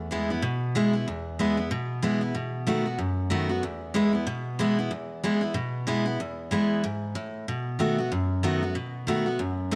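Rock in E major at a brisk 187 BPM with a swung eighth-note feel, this upbeat, retro cut features a lone picked steel-string acoustic guitar, full-bodied and up front with dreadnought depth, moving between E and B7 across a range of E2 to F#4 in a small room with light reverb over its 9.8 seconds.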